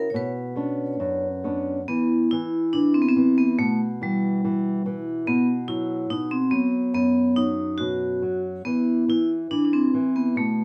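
Rubato and loosely in two, this passionate, mournful fado excerpt places a bright, metallic vibraphone melody, struck with hard mallets and motor off, over a thumb-plucked acoustic flamenco guitar accompaniment, both up front in a wet studio reverb as the harmony moves from Bmadd9 through Em and B5 to E5.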